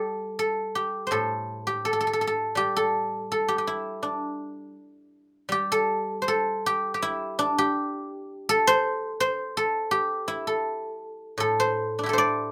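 Chinese traditional solo plucked-string music, serene and pastoral, moves in a rubato 2/4 at about 82 BPM. A lone acoustic guzheng, played with fingerpicks and sitting up front, carries the whole 12.5-second excerpt with a silvery, ringing tone that spans from A2 to D5. Light reverb gives the sound a gentle halo, and a new section begins at 5.5 seconds.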